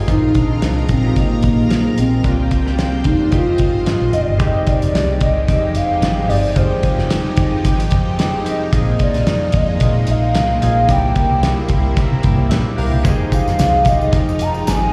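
Indie bedroom pop in F dorian at 111 BPM with a gentle 16th-note swing, wistful and hazy, this excerpt sets a hollow, woody clarinet-like synth lead with vibrato and slapback echo over shimmering string-machine violins, glossy chorused retro synth keys on cassette tape, and a dark, slightly broken-up electric guitar bathed in lush chorus. Underneath, a round, foam-muted picked bass and a muffled, cloth-damped drum kit with a fat snare sit up front, while the synth keys take a fill from 11.4 to 13.0 seconds and a jingly tambourine slips in at 13.0 seconds. Chords drift through suspended sevenths and Fm9, and the whole mix sounds like a live gig heard through the venue's PA in a recital-hall reverb.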